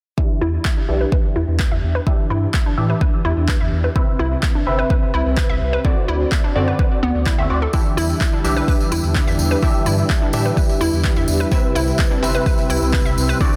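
A dense, heavily limited modern mix with light reverb carries this bittersweet, driving progressive house passage in E minor at 127 BPM, cut from a longer piece and moving through Em7, Cmaj7 and D7. An up-front, deep electronic kick and layered handclaps anchor a thick, saturated sub bass, while a crystalline, detuned wavetable pluck spins arpeggios through chorus and delay and a punchy unison supersaw fires phased stabs, both pumping against the kick under filter sweeps. At 7.7 seconds a mellow, smooth analog pad with chorus and vintage 12-bit sampler grit swells in with slow-attack sustained chords, joined by a jingly acoustic tambourine.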